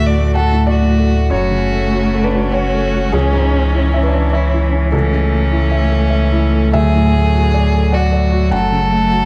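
Swaying in a rubato three, this reflective, fragile neoclassical piece for piano and strings, cut from a longer work, sets a smooth, vibrato-rich solo violin melody over a felt-muted upright piano whose soft, intimate tone carries audible action noise, while a rich bowed cello traces a second line and an expressive viola with portamento sits in the background beside a deep, round sub bass held up front, all within light reverb.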